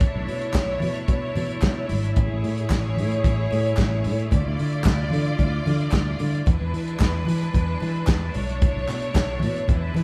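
A straight 4/4 disco groove at 112 BPM rides on an up-front soul drum kit with a punchy kick and rolled-off top, a round, foam-muted fingered electric bass, damped high-tuned congas and hollow group handclaps in the background from 0.5 to 9.3 seconds, while a distant, lush string section with a biting tone and vibrato holds sustained chords through Bm11, Amaj7, Dmadd9 and E7, giving this celebratory, glamorous excerpt of a live band in a large reverberant room.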